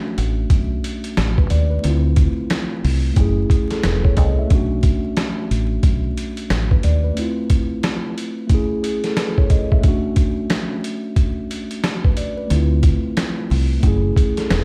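Tough and gritty, this boom-bap hip-hop excerpt in B minor moves at 90 BPM with a swung sixteenth feel, as a mellow tine electric piano with cassette-tape coloring comps through chords like Bm7, Dm7 and Amaj9#11 over up-front, pitched-down sampler drums with a thumpy kick and medium-tuned snare, while a dark, round, foam-muted fingered electric bass punches underneath, dropping out from 7.1 to 12.5 seconds, all set in a bare stone room with vinyl crackle.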